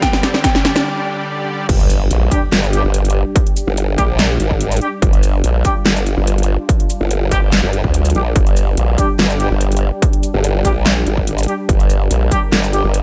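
Heavy wobble dubstep at 144 BPM in a half-time feel, aggressive and chaotic, set in G phrygian and cut from a longer piece. It opens with a short build-up: a single intimate grand piano note with delay sounds over a lush, detuned supersaw pad that pumps under sidechain behind a low-pass filter, while a drum fill and a very quiet riser push toward a brief break. At 1.7 seconds the drop lands with an impact, and a formant-sweep wobble bass surges up front, sawtooth and sine layers thickened by chorus and overdrive. From 2.3 seconds a dark brass ensemble with light vibrato fires delayed stabs in a vintage, classical style, and a second, saturated and detuned wobble bass joins at 2.5 seconds. Underneath, a distorted, layered electronic kick drives a dubstep kit with a huge snare, metallic hats, handclaps, shaker and crash cymbal. The mix is dry and loud, with the basses and drums dominating.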